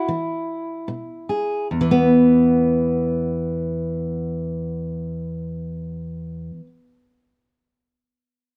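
Peaceful and pastoral, this folk excerpt in E major features a solo fingerpicked steel-string acoustic guitar, warm with an auditorium-style body and placed up front, at a rubato 71 BPM in 3/4. It slows over an opening E chord before moving into a chordless passage from 1.7 seconds until it ends at 6.7 seconds, all within a dark production touched by light reverb.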